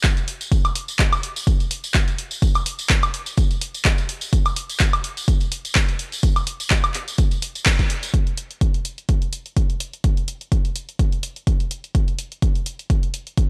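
A punchy, overdriven electronic kick drum anchors this energetic, soulful house cut at 126 BPM in 4/4, pushed up front with a gritty edge and re-recorded in a large room. Beside it, an analog drum machine supplies handclaps, hi-hat and woodblock, also overdriven and forward in the mix, riding a 55% swing on the 16ths. A compressed, saturated tambourine with a maracas and group-handclap character sits lower underneath, playing until 8.1 seconds. A band accent lands at 7.7 seconds, just before the groove moves into a second section where the kick and drum machine carry on alone to 13.5 seconds. The sound is dry and raw, with the grainy feel of hardware and cassette tape, and the passage is cut from a longer piece.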